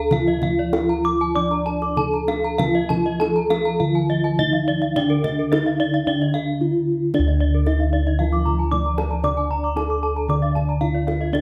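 Round, beating bronze bossed gongs sit dry and up front, carrying the bass of this shimmering, hypnotic Balinese gamelan excerpt in D pelog at 97-114 BPM. Over them, a mellow metallophone played with padded disc mallets carries the melody, a close-miked, full-bodied metallophone struck with a wooden mallet supplies accompaniment, and two bright, airy metallophones played with horn mallets spin arpeggios, all shimmering from their paired tuning. A soft-handed kendang sounds tight but distant in a large room, and after a break at 6.3 seconds its drum fill at 6.7 seconds leads into a new section at 7.1 seconds.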